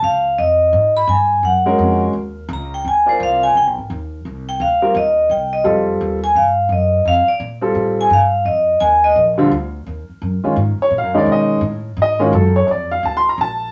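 A swung 4/4 feel carries this playful, relaxed small-group jazz passage, with a woody, thumpy pizzicato upright bass on gut strings running beneath it from start to finish. Bright, ringing vibraphone struck with medium hard mallets and the motor off takes the melody up front until 9.1 seconds, while an upright piano with a natural tone and long sustain enters at 1.7 seconds to accompany. The group sits in a wet studio reverb.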